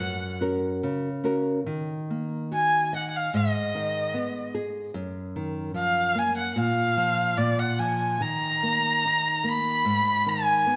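A rich, earthy erhu carries the melody from the first moment, bowed by a single player with light vibrato and portamento, sounding up front yet touched with a distant quality. Beneath it, a small, fingerpicked nylon-string guitar supplies acoustic accompaniment throughout, the two heard through close, detailed microphones and a moderate reverb like a scoring stage. This short fado excerpt moves with a rubato feel in 2/4, its mood mournful and passionate as the harmony opens on F# and moves through minor chords into bare open fifths before returning to Abm.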